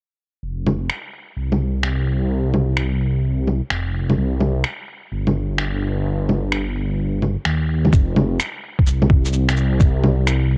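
Future garage in a melancholic, wistful mood, this short excerpt cut from a longer piece rides a swung 4/4 groove built on a menacing, detuned saw bass that evolves through filter swells, its saturated tone blending sawtooth, square and sine layers with sidechain pumping. Muffled, pitched-down electronic bongos, finger snaps and shaker sit up front with a compressed, sampler-style character and a cassette-tape grain. At 7.9 seconds a thumpy, compressed kick drum arrives for the second section, all within a light reverb and the hazy feel of a home cassette recording.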